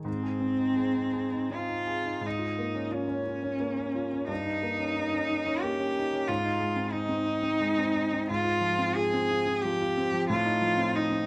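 A rich, bowed cello carries the melody with smooth, even vibrato, entering at 0.1 seconds over a clear, intimate grand piano accompaniment whose action noise can be heard up close. This solemn, melancholic romantic duo moves in a rubato 3/4 at roughly 77-93 BPM in Ab major, its harmony passing through Bbm7/Ab, Eb7/G and Fm/Ab before landing on F7/A. Close, detailed microphones and light reverb give the short passage, cut from a longer piece, a natural, present sound.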